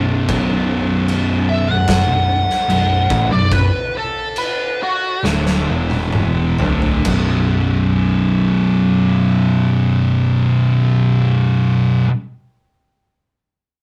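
Two thick fuzz guitars and an overdriven picked bass open this heavy, sludgy stoner and doom metal passage, cut from a longer piece, grinding out a slow riff on a B minor chord. One guitar sits up front with a warm, distorted tone, while the second, darker guitar and the growling bass sit in the background. An oversized, low-tuned acoustic kit with a boomy kick, fat snare, dark cymbals and toms pumps in a big room, and the tempo gradually slows from 0.3 s to 7.1 s. A dark, up-front fuzz lead guitar with wah enters at 1.5 s for a brief solo in a higher register. The drums play a fill from 5.2 s as the chords move through E5 and D5 to B5, then the kit drops out at 7.3 s, leaving the guitars and bass to carry the riff. The rough rehearsal-room sound has tube saturation and moderate studio reverb.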